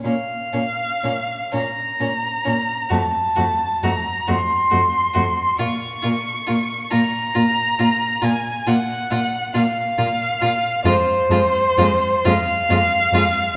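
A wet scoring-stage reverb with a 1.6-second decay surrounds this solemn, elegiac fragment of a slow romantic movement for string quartet, cut from a longer piece. Set in Bb minor and 12/8, it unfolds at roughly 39-47 dotted-quarter beats per minute with a free, rubato feel. A single bowed violin carries the melody up front, its rich, smooth tone shaded with vibrato as it ranges from C5 to Db6. A second violin, clear and focused, holds a lower line, while a close, even cello anchors the bass and a distant viola sits in the background with its accompaniment. The harmony moves from Bb5 to F, then to Bbm at 5.6 seconds and Fm at 10.9 seconds, and the melody violin is the last to sound, ending at 13.6 seconds.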